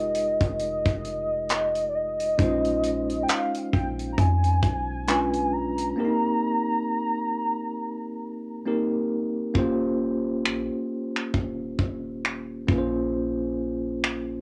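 A velvety, warbling synth lead with chorus, vibrato and tape echo carries the longing melody of this moody contemporary R&B fragment until 8.7 s, over a bright, bell-like tine electric piano, a deep, boomy 808-style bass and a polished drum kit of finger snaps, handclaps, hi-hat and a tight kick, all captured dry on a home cassette recording with a gently swung feel and a break from 6.0 s to 9.6 s.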